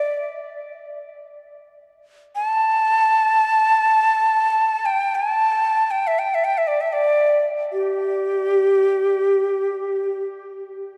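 A breathy Native American-style cedar flute opens the recording alone, playing in free time from the start until it stops at 10.2 seconds. Its woody tone carries a gentle vibrato and soft attacks, and it sits up front in the mix, moving between G4 and A5. A diffuse ambient delay trails the flute, while a long cathedral reverb gives the whole passage a spacious, meditative air in this dark, warm production. The mood is calm and contemplative, in the manner of world meditation music. The passage is cut from a longer piece.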